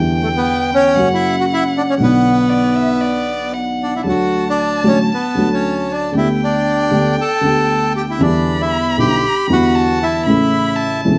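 Dramatic and sultry, this fragment of a tango moves at 116 BPM in 4/4 with a rubato feel, starting in B minor over Em7, F# and Bm before brightening into D major at 4.1 s through D, Gadd9/D, Em7 and A. A reedy, bright bandoneon carries the melody up front with a slapback echo, while a single bowed violin adds a second line with vibrato, portamento and a soft attack. A dark, woody upright piano with long sustain provides prominent accompaniment, all set in a moderate studio reverb.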